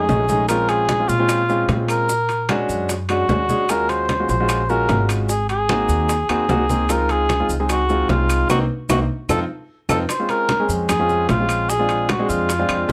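A mellow cor anglais sings the melody up front with light vibrato and plate reverb, over a polished, intimate concert grand piano with audible action noise and a woody pizzicato upright bass in this lively, sunny Afro-Cuban jazz fragment in straight 4/4. Moments later the percussion joins: hard-handed congas, ringing metal-shell timbales, grainy maracas, very quiet round low-tuned bongos, and close, dry claves from 0.5 s. The band hits an accent from 8.5 s, capped by a drum fill, before a new section opens at 10.1 s.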